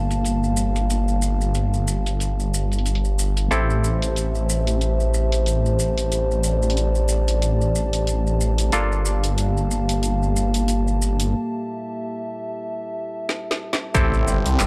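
A dry, gritty hardware sound with transformer saturation frames this funky glitch hop passage, cut from a longer piece and swung on the 16ths, where a swirling, thick phased saw bass sits up front beneath moody, nasal analog pad chords and percussive, stringy clav stabs treated with tape echo, both pumping against the sidechain as the harmony moves between Gm9 and Am7. An overdriven, layered drum kit of woody snare, bright hats and handclaps runs under a filter sweep alongside grainy, mellow maracas, dropping into a break at 11.3 seconds and a fill at 13.3 seconds. A very quiet electronic impact arrives at 13.9 seconds, and a single knocking, overdriven kick lands at 14.0 seconds to close the passage.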